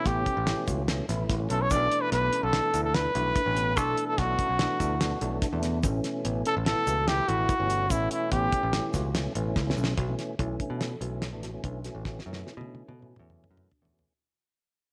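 A breathy, whispered trumpet carries an intimate melody over a fat, lightly overdriven tonewheel organ with fast rotary speaker in this tense, brooding progressive instrumental in 5/4, joined by mellow tine electric piano arpeggios in the background, punchy picked electric bass, a dry, damped 70s drum kit with fat snare and tight kick up front, and a grainy egg shaker, with the trumpet dropping out at 8.9 seconds before a drum fill leads into a fade-out from 10.0 seconds in a small room with light reverb.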